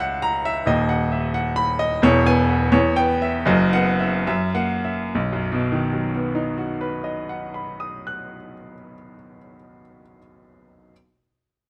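A warm, natural-sounding baby grand piano sits up front in light reverb, playing alone across its D#1 to F#6 range in this heroic, sparkling classical virtuoso study in B major and 6/8. Cut from a longer piece, it moves with rubato at 65-91 BPM in dotted quarters, slows from 1.3 to 5.1 seconds as the harmony passes through C#m7/E and B/F# to F#7, and settles on B at 5.1 seconds as a new section begins.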